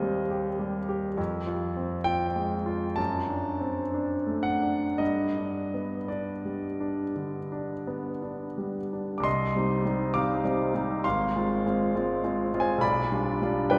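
Melancholic and yearning, this romantic classical nocturne for solo concert grand piano moves in a flexible, rubato 4/4 at 54-70 BPM in C minor, ranging from a deep bass Ab1 up to D6. The piano sits up front with a clear, intimate, polished tone, long sustain and audible action noise, bathed in a wet church reverb that lends a hall-like glow. The harmony drifts from Cm/Eb through Fm, D7/F# and G before a new passage at 9.3 s returns to Cm, moving through Fm/Ab to a G7/B that leaves this fragment of a longer piece suspended.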